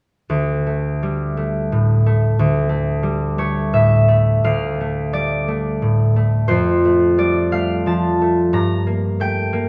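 Gentle and mysterious, this classical piece for solo concert harp unfolds in D minor at about 87 BPM in 3/4, with a free, rubato feel and uneven beats. It is cut from a longer work. The fingerpicked harp sits up front and covers a span from D2 to Bb5, its acoustic tone both warm and ringing as it opens on a D5. A second section begins at 4.4 seconds, with the harmony settling onto Dm/F at 6.5 seconds and moving to Gm at 8.5 seconds. A wet recital hall reverb surrounds the instrument, letting each plucked note bloom into the space.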